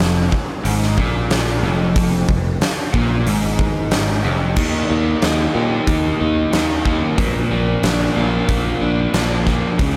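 A small room's light reverb frames this gritty, brooding classic rock excerpt in F minor at 92 BPM, where a huge arena drum kit with bright cymbals, a fat snare and a punchy kick sits up front over a growly picked electric bass, while two overdriven guitar riffs hover in the background, one from a hollow-bodied semi-hollow guitar and one from a raw garage guitar carrying slapback echo, as the chords move from Fm to Eb at 4.6 seconds and on to Bb at 7.2 seconds.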